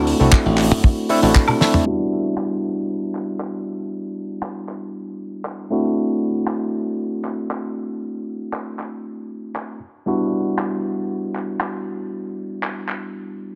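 A gritty, barky electric piano, overdriven through a combo amp with sidechain pumping, tape echo and a low-pass filter, opens this groovy, sensual nu-disco excerpt over a punchy, glassy slap bass that drops out at 1.3 seconds. A dry, tight kick and a damped 70s kit with a fat snare, hi-hat, handclaps, toms and woodblock sit up front, and the kick stops at 1.5 seconds as a drum fill leads into a filter sweep from 1.9 seconds. The harmony moves between D7 and Em7 in a light, small-room ambience.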